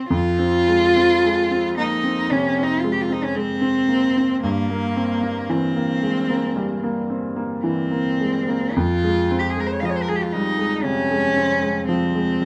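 A rich, focused bowed cello sings the melody with vibrato over smooth, vintage-toned grand piano accompaniment with long sustain in this melancholic, solemn romantic classical excerpt in F minor, moving at a slow, rubato 49-59 BPM in 4/4 from F minor to C7/G at 4.4 s and back to F minor at 8.7 s, captured with close, detailed microphones and light reverb.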